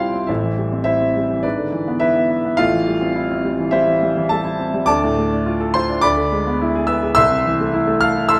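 A clear grand piano carries this passionate, agitated classical study alone from 0.0 to 8.4 seconds, its present, up-front tone ringing with long sustain. The writing has the feel of a virtuoso piano study, ranging from deep A1 in the bass to bright F6 at the top. The pulse sits in 4/4 but is shaped with rubato, giving the phrasing a restless quality. The harmony moves through Am7, E7/G#, Am7, Dm and E7/D before settling on Am/C, with the key of A minor established from 4.9 seconds. A wet recital hall reverb surrounds the instrument with a generous sense of space, and the passage is cut from a longer piece.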